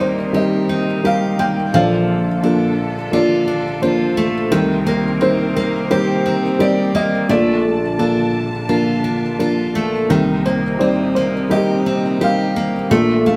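An acoustic folk-pop ballad at 86 BPM in 4/4, this nostalgic, tender passage is cut from a longer piece and runs about 13.4 seconds. A felt-muted upright piano carries the melody up front, its mellow, boxy tone intimate enough that the audible action noise of the instrument comes through. Beside it, a picked steel-string jumbo acoustic guitar plays bright, full-bodied arpeggios. Further back, a chamber string section bowed con sordino holds sustained chords with a dark, veiled sound, vibrato and a smooth top. The harmony moves between Cm7 and Bbmaj7, and all three parts play throughout, set in a moderate large-studio reverb.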